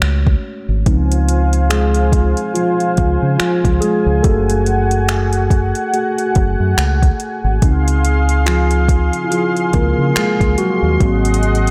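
A mellow tine electric piano leads this tender, romantic contemporary R&B excerpt, set over a deep, round fingered electric bass and an up-front, overdriven drum kit of finger snaps, metallic hi-hat and soft kick, while a lush, detuned unison pad with chorus and sidechain pumping enters at 0.9 s, and the whole mix is soaked in a dreamy plate reverb.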